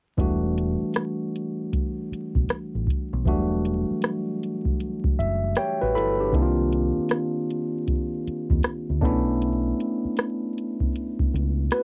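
A barky, lightly overdriven tine electric piano sits up front through a combo amp, carrying the chords of this sultry, smooth neo-soul and R&B excerpt at 78 BPM with a swung sixteenth-note feel in E dorian, and it plays a fill from 4.8 to 6.3 seconds as the harmony moves from Em11 to Cm11 and then Bm11. Beneath it, a deep, round fingered dub bass gives a dark low end, while a dry analog rhythm box adds a deep kick, metallic hi-hats and rim clicks with a tape-softened tone. The excerpt has a snug booth ambience and the hazy character of a home cassette recording, with vinyl crackle.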